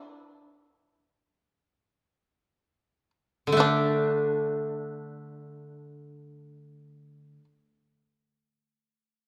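A bright, buzzing shamisen opens this solitary, meditative passage of Japanese traditional chamber music, its plucked line sitting in the background and slowing over the first 3.6 seconds. The playing moves in free time, with the instruments tuned to A4 = 439 Hz. At 3.5 seconds the koto enters up front with a dry, woody accompaniment spanning D3 to D4, and a new section begins as it does. The fretless shamisen carries on until 7.4 seconds, its percussive attack set back behind the closer koto. A moderate recital-hall reverb lends the space a gentle sense of air around this short fragment of a longer piece.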